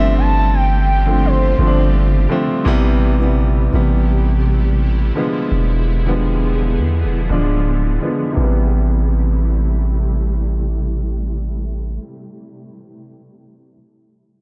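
Contemporary R&B with a late-night, longing mood, this short cut from a longer piece moves with a gentle swing on the sixteenths. A smooth, gliding lead with chorus, tape echo and vibrato sings the melody only briefly, dropping out at 2.3 seconds, its detuned sawtooth edge lending it a soft sheen. Underneath, a polished, up-front grand piano carries the accompaniment through a low-pass filter, playing on after the pad and bass stop at 12.0 seconds and closing alone at 13.8 seconds. A cloudy, granular pad sits further back, holding blurred, warbling chords with a slow attack and its own reverb. A deep, sine-toned 808-style bass anchors the low end with long, decaying notes that sit at the front of the mix. The chords move from G7sus4 to Am7, through E7b9 and back to Am7, in a dark, dry production.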